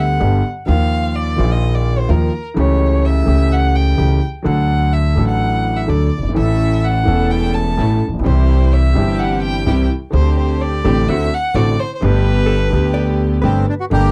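A dry, close 1970s-style studio sound frames this sultry, melancholic tango fragment in G major at 127 BPM with a rubato feel, where a clear, distant bowed violin solos over an intimate concert grand piano with audible action noise and deep bass and a woody, thumpy pizzicato upright bass, soft sul tasto string-section stabs float in the background from 6.4 seconds, a clean hollow-body jazz guitar with slapback echo slips in at 12.5 seconds, and a reedy, full bandoneon takes up the melody at 13.4 seconds.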